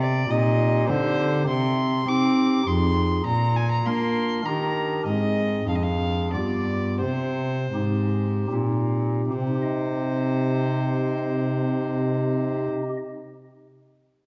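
In a straight triple metre, this baroque-style sonata movement moves between 70 and 102 BPM, and it slows down from 4.2 to 9.3 seconds before a new section begins at 9.3 seconds. The mood is introspective and grave, set in C minor and cut from a longer piece. A single period-style violin carries the melody from C5 to D6 on gut strings, its bowed tone rich and reedy with light vibrato, sitting slightly beneath the accompanying parts. Close and up front, a lone cello plays the bass line with a nasal, airy bow on gut strings. A pipe organ on stopped flute stops fills in the harmony with a soft, hollow, mellow baroque voicing and audible chiff, holding on briefly after the strings finish and ending at 13.0 seconds. The harmony passes from C minor through F minor seventh, B-flat, E-flat major seventh and A-flat to a diminished chord and G seventh before returning home, all bathed in a wet recital-hall reverb within a dark, warm production.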